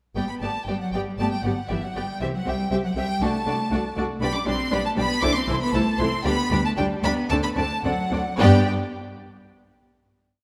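Graceful and lively, this quick classical-period movement for string orchestra in G major moves at 108-121 BPM with a rubato feel, the violins carrying a smooth, vibrato-rich melody up front while the cellos double the tune at the octave from close by. Alongside them, the second violins add a focused line of repeated notes and sustained chords, the violas fill in lush accompaniment, and the up-front double basses anchor the harmony with repeated and sustained bass notes. All five sections play together from 0.2 s to 8.7 s in a moderate concert hall reverb, with the piece settling onto a final G chord at 8.4 s.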